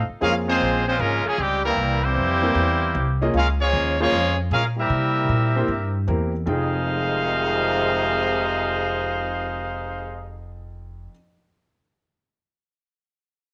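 Light reverb and a studio ambience frame this brassy, swinging big band jazz passage, cut from a longer piece. A brilliant, up-front trumpet section carries the melody with light vibrato over a mellow, distant trombone section on the second line, while a woody pizzicato upright bass and a clear grand piano, intimate in the background with audible action noise, fill out the accompaniment. The harmony moves between Bbm7 and C7 before settling on Fm9 at 6.5 seconds, and the brass stop at 10.4 seconds as bass and piano play on.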